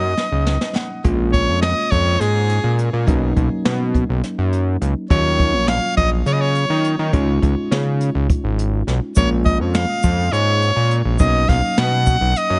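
An edgy, close-miked soprano saxophone carries the melody up front, played in a classical style with light vibrato and a touch of delay, in this bright, intricate piece of progressive instrumental band music cut from a longer work. It moves in 7/8 at 207 BPM counted in eighths with a straight feel, tuned to A4 = 444 Hz. A bell-like tine electric piano supplies clean, direct accompaniment, and a fat, saturated analog bass with a detuned sawtooth tone, fast attack and filter sweep sits up front beneath it. From 0.2 seconds a jazz kit played with brushes, with its boomy kick, medium-tuned snare and hi-hat in a small room, joins the electric piano for a short fill that leads at 1.0 seconds into a passage cycling through Bbm7, Cbmaj7, Ebm7 and Dbadd9. A grainy tube shaker enters in the background at 9.2 seconds, and the whole mix sits in light reverb with a soft top end.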